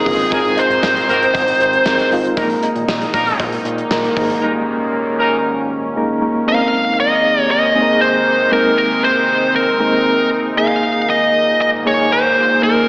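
A lush hall reverb gives this 1980s-style pop fragment a big arena sound, tinged with the character of AM radio and a small room's ambience. The mood is romantic and uplifting, in a straight four-beat feel, built on sustained add9 and sus4 harmony. A resonant, detuned sawtooth pad and soft, round electric-piano-like synth keys with chorus and tremolo run throughout, underpinning a distorted, compressed fuzz lead guitar that sits up front with the melody. A gated drum kit with a punchy kick, medium-tuned snare, hi-hat and tambourine, along with a fat, saturated analog bass and a faint metallic cowbell, drive the opening before the drums drop out at 4.4 s. Clear vintage horn stabs with light vibrato and octave doubling punctuate the first part until 5.4 s, and the fuzz guitar, heard briefly at the start, returns at 6.5 s to carry the melody over the keys and pad.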